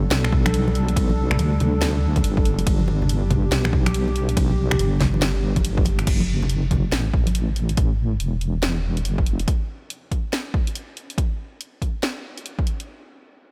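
This deep dubstep passage begins on a drop, with a sawtooth-and-sine wobble bass sitting up front beneath a moody, wave-folded analog pad. Both are treated with chorus and held on a G chord. The mood is cavernous and heavy, carried by a half-time feel with a swung sixteenth-note lilt. A punchy, layered electronic kick anchors the groove alongside a garage kit of cracking snare, finger snaps, hi-hat, ride and crash cymbal, while very quiet, bright congas sit close in the background. The pad drops out at 6.0 seconds, and the harmony moves to F# minor at 6.1 seconds. The detuned, compressed bass carries on until 9.5 seconds, after which the drums finish the passage under a light reverb.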